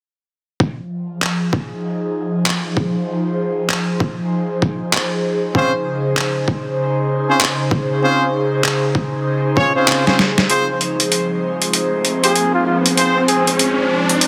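Funky and swaggering, this glitch hop cut in F minor moves at 97 BPM in 4/4 with a 62% swing on the sixteenths, shifting from Fm to Dbmaj7 and back. A gritty, pitched-down, overdriven electronic kick with a thumpy punch sits up front alongside a sampler-style boom bap kit of handclaps, hi-hat and a medium-tuned snare, both compressed and set in small room ambience, with the kick dropping out at 9.7 seconds just before a drum fill. An airy, breathy pad with a soft noise layer and detuned triangle and sawtooth tones carries the texture with chorus, phaser and sidechain pumping, while a tight, bright horn section in octave doubling punches in stabs with vibrato and tape echo from 5.5 seconds. From 10.5 seconds a build-up takes over: a filter sweep moves across the ambient pad, a dark, warbling, lo-fi tape-like pad with ring modulation and detuned square and triangle tones settles in the background at 10.9 seconds, and an electronic riser enters at 11.5 seconds. 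Briefly, a breathy, dark solo trumpet with jazz-style scooped notes, vibrato and a smooth top adds 12-bit sampler grit and tape echo, all within a lush hall reverb and a dense, heavily limited modern master.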